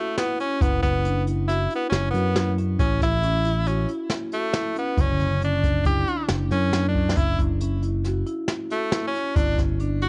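Progressive instrumental band music in 5/4 with a brooding, intricate mood, where a forceful, edgy tenor saxophone solos up front with vibrato and scooped notes over warm, close-miked marimba arpeggios, a jazz brush kit with a boomy kick that enters at 0.2 seconds and fills at 7.0 seconds, and a growly picked electric bass from 0.6 seconds, all colored by light reverb and the warbling pitch drift of worn cassette tape.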